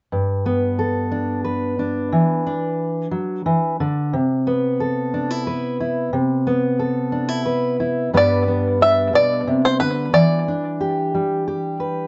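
A fingerpicked steel-string acoustic guitar opens this short folk excerpt, its dark, woody dreadnought tone and old strings carrying the accompaniment from the start in a hopeful, nostalgic mood. The tempo sits at 60 BPM in a straight 6/8, and the guitar moves through G, E5 and Cmaj7 in G major, ranging from G2 up to B4. At 8.2 seconds a bluegrass banjo steps up front with the melody, bright and twangy, its fingerpicked notes percussive and colored by an analog delay as they stay between B4 and E5. Beneath it the harmony shifts to G and then Em7 before the passage breaks off at 12.1 seconds, having been cut from a longer piece. A light reverb surrounds the pair, and the sound is gently rounded, with nothing above 7.8 kHz.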